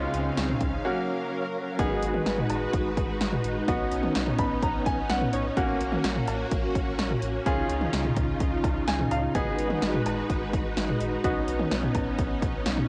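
A punchy analog drum machine drives this melancholic synth-pop excerpt in straight 4/4 at 127 BPM, kicking in at 0.1 seconds with cowbell, hi-hat, kick, snare and toms, under a deep, round analog bass, chorused vintage string-machine violas holding sustained chords, a brilliant grand piano with tape coloring that adds fills at 4.2 and 8.6 seconds, and a background electronic swell opening the piece, all in G# dorian with light reverb and a homespun cassette sound.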